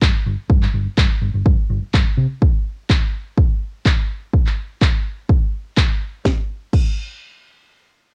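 A punchy electronic kick, a house kit with crash cymbal, handclaps and a cracking snare, and a dark, round hollow-body short-scale electric bass all start together in this funky, sensual stretch of filtered disco house at 125 BPM in straight 4/4. The fingered bass, amped and up front, pumps under sidechain compression through a low-pass filter before dropping out at 2.3 s, leaving the layered, tape-tinged drums with studio reverb to carry on until 6.9 s. The cassette home recording keeps the overall sound fairly dry, and the clip is cut from a longer piece.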